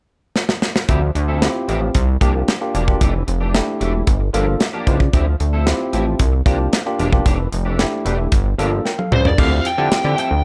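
A glossy, chorused synth bass sits up front in this danceable, late-night slice of early-eighties boogie funk. Its pulse-wave and sawtooth tones are shaped by pulse-width modulation and a plucky filter with a fast attack. A tight acoustic funk kit in a small room drives the groove with kick, snare, hi-hat, toms and crash, opening with a fill at 0.4 seconds. The bass and a bright, picked clean electric guitar riff treated with ensemble chorus come in at 0.9 seconds. Soon a barky tine electric piano, played through a combo amp and bathed in plate reverb, adds accompaniment over a cycle of Dm11, C9sus4, Fmaj13 and Gm7 chords. During a second drum fill, a compressed fuzz lead guitar enters up front at 9.1 seconds, carrying a distorted, plate-reverbed melody into a new section, all within a dark, warm production with light small-room ambience.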